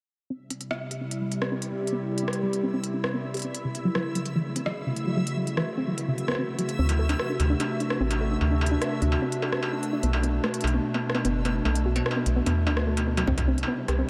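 A soft, round pluck opens this eerie, cerebral IDM excerpt at 0.3 seconds, its detuned, warbling arpeggios set beside a reversed, granular texture that swells high above in a bright, dreamy shimmer. Almost at once a hollow, flute-like pad settles in up front with sustained chords, its airy tone roughened by ring modulation, a noise layer and vintage sampler grit. An industrial drum kit ticks along with smooth hi-hats, rim clicks and struck metal, fed through analog delay. Filter sweeps move across both the pad and the arpeggio as the chords drift from C through F#m7 and D7 to Bm7. At 6.8 seconds a dark, metallic FM bass arrives up front with a fast attack and decaying notes, and a distorted electronic kick appears briefly in the background at 13.3 seconds. The whole mix is soaked in a huge ambient reverb that makes it feel vast and ghostly.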